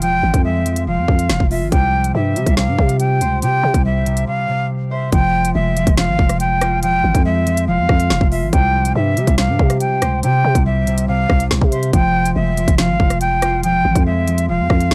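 Drill-flavoured hip hop with a dark, cold mood and a half-time feel, cut from a longer piece: an airy jazz flute carries the melody with vibrato and a soft, expressive attack, while a ringing, fingerpicked concert harp supplies acoustic accompaniment over a chord movement between Fmadd9 and C. Underneath, a growling, buzzy 808-style bass with a fast attack and decaying tail sits up front beside an electronic drill kit of hard-clipped kick, woody snare, crisp hats and rim clicks. The small, dry room gives the whole a gritty hardware character, with a brief break from 4.3 to 5.1 seconds before the second section begins.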